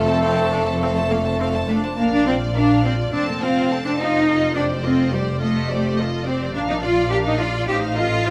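Quirky and playful, this whimsical cinematic film cue excerpt moves at 105 BPM in a straight 4/4, with a smooth, distant violin section carrying the melody over a focused second violin line and viola accompaniment, a lush, up-front cello section and bowed double basses anchoring the bass, and a warm solo bassoon adding a brief accompaniment that stops at 1.7 s, all set in a moderate concert hall reverb as the harmony moves from F to Bb at 2.0 s and later colours itself with an F13.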